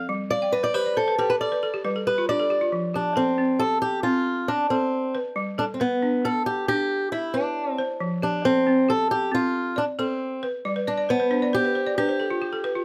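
A steady 12/8 pulse at 91 BPM in F lydian drives this warm, hypnotic west African traditional clip, where a boxy, up-front fingerpicked swing-style acoustic guitar carries the melody, opening with a short solo to 2.7 seconds, over woody, buzzing balafon arpeggios struck with hard rubber mallets that add fills from 0.3 and again from 10.7 seconds, all framed by light reverb and close, detailed microphones as the harmony sways between G and F.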